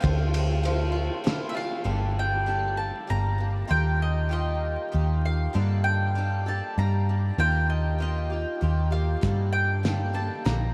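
A dark, round hollow-body electric bass sits up front as a double-strung mandolin picks the melody over a boxy, chorus-tinged swing-style acoustic guitar and a muffled, cloth-damped drum kit that plays until 1.4 seconds and returns at 9.2 seconds, giving this hopeful folk and heartland rock piece in 3/4 a dreamy, reverb-soaked haze with vinyl crackle throughout this short section cut from a longer work.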